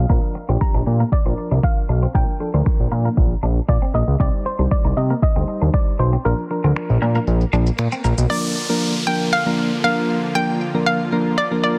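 A hollow, bouncy square-wave pluck carries the chorused, delayed melody over a fat, nasal analog bass in this carefree, upbeat dance-pop excerpt at 117 BPM in Bb major, joined by soft, mellow electric-piano-like synth keys, a clean twelve-string electric guitar riff drenched in lush chorus, and an up-front deep house kit of deep kick, smooth hats, finger snaps and shaker. The bass and keys pump under a filter sweep until the kick drops out at 6.2 seconds, an electronic swell and downlifter arrives at 7.4 seconds, and at 8.3 seconds the bass and drums give way to a smooth, detuned supersaw pad sitting in the background of a dense, heavily limited mix.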